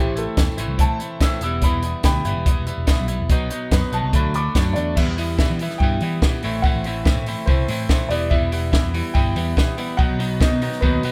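A straight, steady four-beat pulse drives this brief indie rock passage, cut from a longer piece, with a compact cocktail drum kit arriving at 0.2 seconds to set the groove up front with a punchy kick, a high-tuned snare, dark cymbals on hi-hat and crash, and a dry, acoustic sound. Beneath it, a picked electric bass supplies a warm, amped low end, while a biting overdriven guitar, bright and double-tracked, plays a picked riff in the lower-middle register. On top, a clear upright piano carries the melody with a woody, polished tone and long sustain, taking a solo through the first 5 seconds before the music moves into a new section. The harmony shifts among minor and major chords, lending the cool mood a bittersweet edge. Light reverb frames the whole band as if playing live together in one room.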